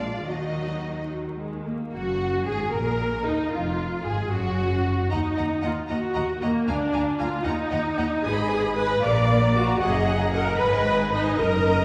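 Heard from further back in a wet scoring-stage reverb with vinyl crackle, this restless, stormy excerpt from a quick classical-period movement for string orchestra in 6/8 moves with rubato as a lush violin section carries the melody in the background, a second violin section adds a smooth-topped line, an up-front viola section plays vibrato accompaniment, and a close, rich cello section joins a clear double bass section on the bass.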